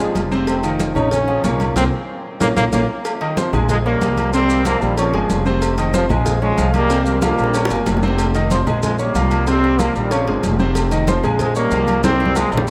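Fiery, passionate salsa in F minor at 187 BPM, cut from a longer piece, where a clear, punchy solo trombone states the opening melody before a band accent and drum fill at 1.8 seconds hand the line to a bright, tight trombone section from 3.4 seconds. Underneath, a polished concert grand piano with audible action noise and long sustain carries the accompaniment over a woody, thumpy upright bass on gut strings, while ringing congas, high-tuned cowbell and bongos, and metal-shell timbales with agogo bells sit in the background, joined by grainy maracas. The whole ensemble is bathed in a vast cathedral reverb, as the harmony cycles through Fm7, Bbm7 and C7sus4.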